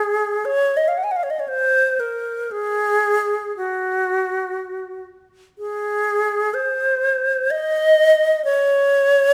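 A moderate scoring-stage reverb surrounds this short classical fragment, cut from a longer piece, giving the solo instrument a sense of space while keeping it up front. A single alto flute carries the whole passage from 0.0 to 9.3 seconds, its tone airy and bright with lifted highs, a soft attack and vibrato. The playing is free and expressive, moving in rubato around 56-64 BPM in a loose 3/4, so the pulse breathes rather than marks time. The piece is set in Db major, and the line ranges from Gb4 to Ab5. The mood is serene and nostalgic, a reflective moment for unaccompanied flute.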